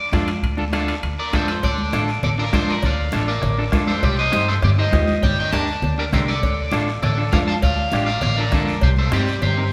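A straight cumbia pulse in 4/4 at 200 BPM sets this fiery, passionate latin fragment, cut from a longer piece, in motion, with the chords moving from Dm through Cm and Gmadd9 back to Dm and Cmadd9. Up front, a twangy, slightly broken-up electric guitar carries the melody from G4 to A5, its picked lines bathed in spring reverb, while a clean, bright electric guitar picks out the accompaniment beneath it. A woody pizzicato upright bass with steel strings anchors the low end from G1 to G2. The percussion mixes close, dry congas with soft hands and a thin skin, a soft-beaten bombo sitting back in a live room, ringing metal-shell timbales and cowbell, and a raspy, band-limited guiro tucked in the background. The whole ensemble sits in the wet reverb of a recital hall or church, lending the short passage a resonant, spacious glow.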